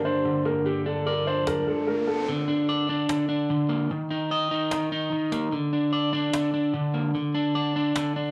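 The slightly broken-up electric guitar stands out most, playing dark, fingered accompaniment up front across the whole 8.3-second clip, cut from a longer hip hop and trap piece with a hard-hitting, brooding mood and a half-time feel. At the opening, a dark baby grand piano carries a smooth, vintage melody with long sustain, filtered and touched by tape echo, and it stops at 2.2 seconds. Beneath it, a glassy FM pad with a slow attack and ethereal chorus sits in the background until 1.5 seconds, while an electronic riser sweeps in from 1.4 seconds into the second section at 2.3 seconds. A woody cajon, close and dry with hard hands and faint snares, drives the groove throughout, its kick muted once that second section begins. The harmony moves from Gm and Dm to Bb/D, Eb5 and D5, all set in a gritty, small-room sound.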